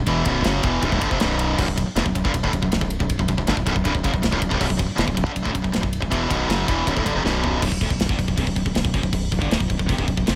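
A dry, close-sounding mix with little reverb opens this short cut from a longer heavy metal piece, aggressive and dark in mood, driving at 159 BPM in a straight 4/4 and sitting in B minor on a Bm chord. Two bright, picked electric guitars play low riffs together, one compressed and distorted, the other overdriven and pushed up front. The overdriven guitar drops out at 7.6 s, leaving the distorted guitar to carry the riff through the closing stretch to 10.4 s. Beneath them, a growling fingered electric bass adds a warm, overdriven low end, heard direct and amped. A tight, up-front acoustic drum kit recorded in a studio room drives the track with kick, snare, toms, crash and ride, and a drum fill from 7.2 s leads into the new section.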